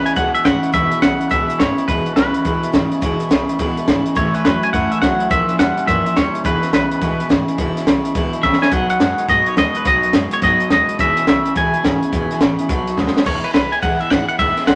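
Rockabilly in E major, upbeat and rowdy, this short cut from a longer piece charges along at 211 BPM in 4/4 with a 64% swing on the eighth notes. Up front, a clean, compressed twangy electric guitar carries the melody, fingered and treated with spring reverb. A second electric guitar through a small old amp drives a riff in the low register with a bright, slightly broken-up bite until it drops out at 13.2 seconds. Underneath, a picked steel-string acoustic guitar with fresh strings gives full-bodied accompaniment, finger squeak included, while a woody, thumpy upright bass with gut strings sits in the background. A compact cocktail drum kit, dark and smooth with a high-tuned snare and punchy kick, stays up front and throws in fills at 8.4 and 13.0 seconds. The chords move from E through A and a passing A#dim7 to B and back home, all in a moderate studio room with a rolled-off top end.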